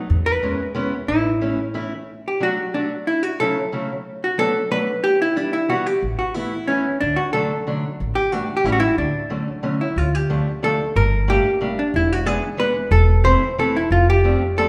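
Bathed in a wet recital-hall reverb, this nostalgic, whirling musette waltz puts a clean, dark hollow-body electric jazz guitar up front on the melody over a boxy parlour steel-string acoustic guitar, fingerpicked on old strings, while a thumpy, woody pizzicato upright bass sits up front too, falling silent after 1.5 seconds and returning at 6.0 seconds.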